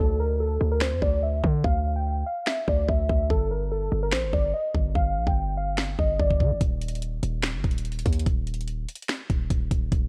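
Hip hop in a trap style, this short cut from a longer piece carries a menacing, melancholic mood over a half-time feel. Warbly lo-fi synth keys carry the melody up front, their detuned square, sawtooth and triangle tones made mellow and nostalgic by chorus, a low-pass filter sweep and delay, moving over Dm and then G5 before stopping at 6.6 seconds. A hard-hitting 808-style bass, punchy and heavy with a sine body and noise layer, sits up front under the whole cut, reaching down to Eb1. The trap drum kit enters at 0.8 seconds with a knocking kick, sharp snare, metallic hats and finger snaps, all sounding electronic and produced. After the keys drop out, the bass and drums carry the final stretch as a break, while a digital ambience of worn, warbling old cassette tape with pitch drift hangs over the recording.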